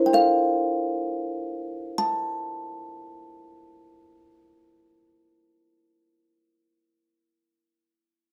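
Played in free time, this short excerpt from a longer piece opens with a pulse that slows over its first 2 seconds. It is a relaxed, sunny Hawaiian miniature for solo kalimba, which rings out alone from 0.0 to 6.4 seconds within the span of A4 to A5, tuned slightly high to A4 = 441 Hz. Its warm, woody, hollow-box tone carries a bright thumbnail pluck, and the instrument sits close-miked and up front in the mix. The opening rests on a single F major chord, and after 2.0 seconds the harmony falls away into a passage of unaccompanied tones. A moderate studio reverb adds a short tail around the full, ringing notes, while the overall production leans dark and warm.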